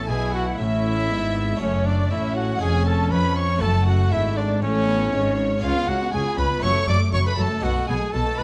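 From the first beat, a close, lightly vibrato trumpet carries the melody alongside a smooth, even violin section, while a second, focused violin section traces its own line in the background of this brilliant, lively baroque-style concerto movement. Beneath them, a distant, clear viola section and an airy, full harpsichord strung with two sets of strings fill in the accompaniment, and a rich, bowed double bass section pairs with an expressive cello section on the bass. Moderate recital hall reverb surrounds the detailed, closely captured ensemble in this passage, which is cut from a longer piece.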